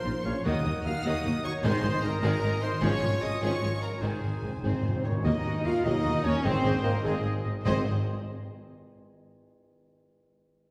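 Heard from further back in a wet scoring stage, this triumphant, adventurous cinematic cue in 6/8 has lush violins carrying the vibrato-rich melody, while a second, distant violin line, a hollow silver flute, a bright oboe and a very quiet clarinet trace supporting lines. Punchy, roomy trumpet stabs ride over mellow French horn chords, a smooth viola accompaniment and ringing harp arpeggios. Cellos, woody double basses and a soft tuba anchor the low end, and articulate hard-mallet timpani break into a fill from 4.0 to 5.3 seconds in this brief cut from a longer piece.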